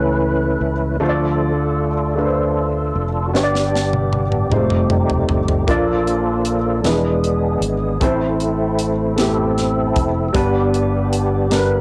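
Slow gospel in 6/8 at 51 BPM, jubilant and reverent, where a fat, lightly overdriven tonewheel organ with key click, chorus vibrato and slow rotary speaker solos throughout over a woody upright piano with audible action noise and a dark, round fingered electric bass, while a tight funk drum kit with a high-tuned snare enters at 3.3 seconds on a fill, all framed by light reverb and cassette-tape home-recording character in a short cut from a longer piece.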